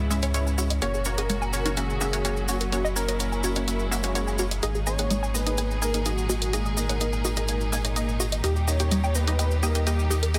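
This emotional, expansive progressive house excerpt opens with a thick, detuned unison lead singing the melody through a delay, over distant bowed strings holding low-passed sustained chords, punchy stabs from a bright unison pluck roughened by vintage 12-bit sampler grit and tape echo, and a deep, saturated sub bass sitting up front. A grainy acoustic cabasa, a layered electronic hi-hat and a round analog pluck playing chorused arpeggios in the background fill out the straight 4/4 groove, while a faint electronic swell sounds between 3.9 and 4.6 seconds. The harmony moves from C#m to F#, then G#sus2 and D#, all in a dense, heavily limited modern master with light reverb.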